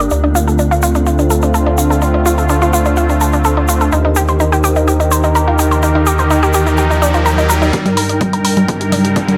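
Melodic techno at 126 BPM in G minor, cinematic and driving, with an up-front sweeping resonant pad of detuned sawtooth chords pumping under sidechain and vintage 12-bit grit, while a nasal, wave-folded analog pluck spins chorused, tape-echoed arpeggios over a round, deep analog bass moving from Dm7 to Eb. Low-pass-filtered electronic hi-hat and congas, a grainy, saturated tube shaker and a cloudy granular pad sit further back in a lush hall reverb, and a riser enters at 5.3 seconds. At 7.7 seconds the chord turns to Gm as a punchy, tape-warm electronic kick arrives, the bass and shaker drop out, and a filter sweep on the arpeggio drives a short build-up.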